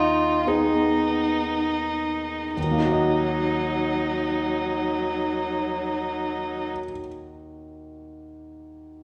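Violin, viola and concert grand piano sound together from the opening moment of this slow, solemn and yearning romantic movement for piano quartet, cut from a longer piece in Eb minor. Moving in a rubato 6/8 at roughly 26-32 dotted-quarter beats per minute, the music slows through its first 2.6 seconds over an Abm/Eb harmony before settling onto Ebm. The violin carries the melody with a rich, smooth and even bowed tone and vibrato, sitting up front in the mix. Beneath it, the viola adds a dark, woody bowed line with its own vibrato. The piano's accompaniment is clear, polished and intimate, reaching into a deep bass with long sustain and audible action noise. The strings fall away at 6.7 seconds, leaving the piano to ring alone until 9.0 seconds within the wet, reverberant acoustic of a recital hall.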